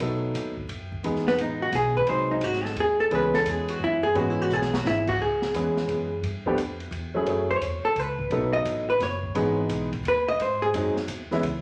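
A swung waltz feel drives this moody small-group jazz excerpt, with a woody, plucked upright bass and an open drum kit whose dark cymbals, high-tuned snare and boomy kick sit beneath a natural-sounding, up-front baby grand comping through the changes. A dark, clean, compressed hollow-body electric guitar takes the lead from 1.3 s, picking an up-front solo line across two matching sections, while the drums slip in a brief fill at 4.5 s. A generous studio reverb and a layer of vinyl crackle lend the recording a vintage, roomy glow.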